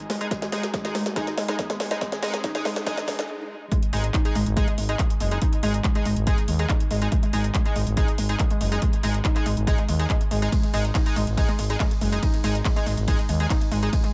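A drum fill on a layered techno kit of cracking snare, metallic hats, ride cymbal and handclaps opens this relentless, industrial peak-time techno cut at 141 BPM, as a very quiet riser and swell, a lo-fi, warbling pluck riff with overdrive and tape echo, a thick, growling FM bass, nasal sync-sweep polysynth stabs and a punchy, up-front electronic kick gather under a filter sweep until a brief stop at 3.3 seconds gives way to the drop at 3.7 seconds, where the pumping bass, pluck and stabs drive on through an echo-heavy mix with light reverb.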